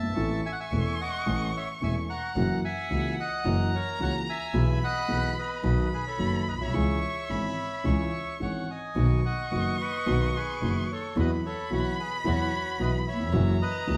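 Tango with a nostalgic, elegant rubato feel, in which a reedy, airy bandoneon carries the melody over an intimate concert grand piano with audible action noise, a clear, biting bowed double bass and a rich, focused violin second line, while a dark, lush string section adds very quiet stabs from 9.0 s, the band playing live together in one room inside a wet, large reverb.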